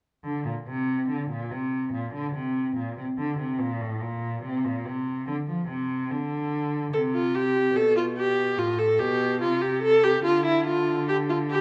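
Heard through worn, warbling old cassette tape with a wavering pitch drift, this recording sits in a moderate recital hall reverb that gives it a gentle, lingering air. It is a classical, baroque-style fugue for string quartet at 72 BPM in a straight 4/4, with a mood that is both driving and contemplative. A single bowed cello opens at 0.2 s as the bass voice, sitting between A2 and F3 with a warm, expressive tone shaped by vibrato and portamento. At 6.9 s a single bowed viola enters up front as accompaniment, its rich, smooth and even line moving between E4 and A4 with vibrato. The harmony moves from Bbadd9 through Am and Dm before settling back on Dm at 10.2 s, and this cut from a longer piece ends at 11.6 s.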